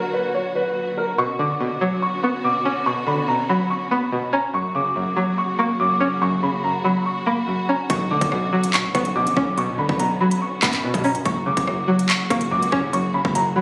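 Captured on a phone with light digital reverb and compression, this dark, tense excerpt of half-time drill hip hop at 143 BPM in B harmonic minor opens with a mellow, boxy grand piano melody softened by a low-pass filter and tape echo over lush, bowed symphonic strings, adds a twangy, chorused resonator pluck at 1.2 seconds, and then at 7.9 seconds brings in a saturated, aggressive 808-style bass and an up-front drill kit of hard-clipped kick, crisp hi-hats, handclaps and rim clicks roughened with 12-bit sampler grit.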